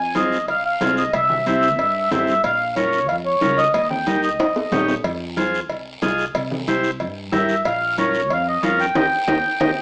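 A reedy, mellow accordion carries the melody from the first moment of this short cut from a fiery, driving cumbia in F minor, with a woody pizzicato upright bass sitting low beneath it at 184 BPM in a straight 4/4. A buzzy vintage combo organ sits up front with the accompaniment, and congas played with hard hands, ringing cowbell and timbales, and a raspy, close guiro fill out the percussion. The accordion's slow-beating, mid-forward tone is the clear focus. It steps away at 4.8 seconds, leaving the organ and rhythm section, and returns at 7.3 seconds. The chords cycle through Fm, C, Bbm and Eb, with the C becoming C7 on the second pass, and drum fills mark the end of each pass, with a band accent hitting near the close at 9.0 seconds. A moderate studio reverb and a small-speaker sound give the whole a compact character.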